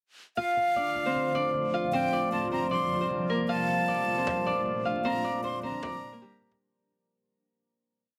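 Hip hop and trap at 154 BPM in a half-time feel, this brooding, menacing D minor piece sets a ringing, fingerpicked Celtic harp loop, doubled in octaves and filtered, up front, with a breathy, close-miked concert flute playing a sparse tape-echoed counter-melody above it. A cloudy, blurred granular pad holds slow-attack chords moving from Dm through Csus4 and Bbmaj7 to Gm7, while a woody, dry cajon sits in the background with a gritty half-time trap beat, faint snares and fast hi-hat rolls. The whole piece is a breakdown with a compressed, radio-like sound and light small-room ambience; it breaks and fades from 5.0 to 6.6 seconds, leaving the harp alone until 8.2 seconds.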